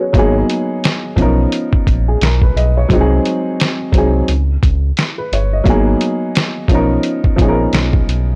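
Reflective and hazy, this excerpt of swung lo-fi hip hop at 87 BPM in G# dorian pairs a woody, boxy upright piano with cassette-tape grit and a low-pass filter, a nasal sawtooth-and-triangle synth bass with vibrato and a moving notch, and a muffled, pitched-down sampler-style drum kit with a thumpy kick, all up front in a dry, gritty hardware recording with transformer saturation as the chords move from G#m9 through Bmaj9#11, G#7/B# and a rootless D#7b13.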